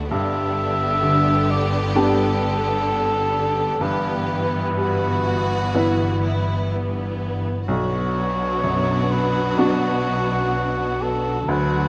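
Cinematic, emotional film score for orchestra in B minor at a rubato 63 BPM, this sorrowful, longing fragment sets a dark, distant cor anglais solo with light vibrato alongside a rich violin section on second lines, over a brilliant baby grand piano of short sustain, a clear viola section, and cello and double bass sections bowing vibrato-tinged low lines in the background, the cellos lush and the basses warm, all moving from G through Em/G to Bm in light reverb.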